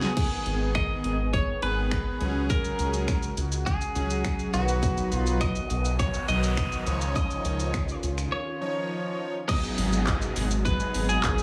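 A straight 4/4 dance-pop pulse at 103 BPM drives this upbeat, euphoric excerpt from a longer piece, opening on a drum fill from an electronic, layered pop kit with a punchy kick, fat snare, hi-hat, handclaps, finger snaps, shaker and crash cymbal sitting up front. A round analog bass enters at 0.5 seconds, deep and dark with a fast attack, and pumps with sidechain compression alongside a fat, bold, detuned polysynth that also carries sidechain pumping. Beneath them a soft supersaw holds airy, mellow sustained chords in the background, moving through G#m, C#sus4, B and C#add9 before settling on G#m7. A clean, twangy twelve-string electric guitar picks the melody with a tape echo trailing each phrase. From 5.6 seconds a noise sweep and downlifter appear in the background, and the sweep runs until 9.5 seconds, where a new section begins, all set in a light digital room ambience.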